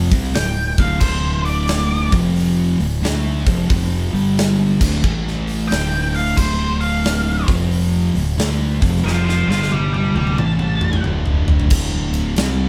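Two thick, dark fuzz guitars open this brooding, ominous stoner and doom metal excerpt, one sitting in the background, alongside a growly, overdriven fingered bass with a surprisingly bright edge. A big rock kit joins at 0.1 s, placed up front, with a punchy kick, a medium-tuned snare, toms, hi-hat, ride and crash giving an airy, polished sound. At 0.3 s an octave-fuzz lead guitar takes a distorted, picked solo high above the riff, carrying on until 11.0 s. The band moves at a swung 90 BPM in 4/4, circling D minor through F5, G5 and A5 power chords, while the drums play a fill from 9.0 s. A moderate stone-room reverb frames the players as a band performing live together in one space.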